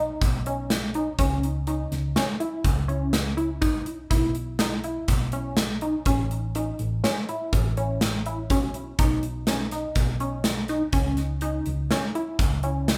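A tight, detuned sawtooth synth arpeggio with chorus, phaser and digital delay opens this driving, intricate progressive instrumental excerpt at 123 BPM in 5/4, joined at once by a dark, round hollow-body fingered bass and, from 0.2 seconds, an up-front gated 80s drum kit with a tight kick and medium-tuned snare, the band playing live in a large studio room over chords moving from B through C#m, E5/B and A.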